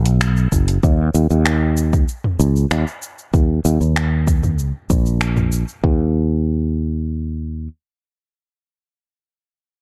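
A dark, warm production with digital ambience frames this wistful sunset chillout excerpt in Eb minor, moving at 96 BPM in a straight 4/4. An up-front fretless electric bass carries the low end, while a deep electronic kick and a layered deep house kit of cabasa, finger snaps, metallic hi-hat and toms set the groove. Both drum parts drop out by 6.0 seconds, and the bass continues until 7.7 seconds.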